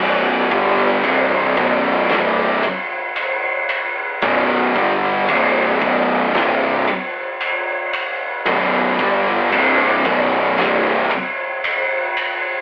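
A bright, double-tracked high-gain guitar sits up front in this brooding, sludgy stoner and doom metal excerpt, grinding out a distorted riff on B minor at a crawling 57 BPM in straight 4/4. Two thick fuzz guitars play riffs beneath it, one very quiet with a warm tone and the other dark and set in the background. A growly, overdriven fuzz bass, bright and picked, adds weight from the background, with all the guitars and the bass playing from the start until 11.1 seconds. An oversized, low-tuned acoustic drum kit enters at 0.5 seconds and stays up front until 12.4 seconds, its boomy kick, fat snare and dark ride cymbal sounding gritty and saturated in a big, pumping room. The whole take has the rough feel of a rehearsal-room recording, with light reverb, warm saturation and a telephone-like sound.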